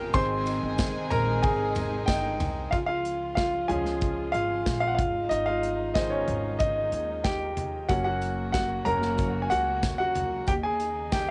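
A straight 4/4 pulse at 93 BPM carries this hopeful, piano-driven pop excerpt, with a clear, intimate baby grand up front leading throughout, its action noise audible and its notes ringing with long sustain over chords moving from Ab through Db and Gb to Eb7. A woody, thumpy pizzicato upright bass and a polished, airy drum kit with a tight kick and cassette-tape colour anchor the groove, while a very quiet, close and dry tambourine jingles briefly before dropping out and returning at 7.9 s. Behind them, a lush, bowed symphonic string section sustains smooth, warm chords, and a distant, floating violin section, soft and pure with tape echo, adds a second line until 2.7 s, all under light reverb with the muffled top of a home cassette recording.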